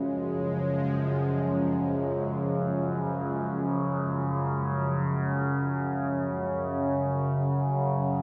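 A huge, wet reverb with a long decay of 8.1 seconds envelops this ominous, desolate dark ambient drone, cut from a longer piece and moving in free time across about 8.2 seconds. Underneath, an overtone-sweeping drone holds a low register from F#2 to C#3, its sawtooth and sine tones resonant and shifting in their overtones, shaded by chorus, phaser and its own built-in reverb. Above it, a sweeping resonant pad sustains chords between C#3 and C#4, evolving and full-bodied, with detuned sawtooth and sine layers, a sub octave, a filter swell and a bright, chorused edge. Both parts sit up front with slow attacks and play together from the opening to the close. The harmony rests on C# before shifting to F#5 at 6.9 seconds, deepening the bleak, suspended atmosphere.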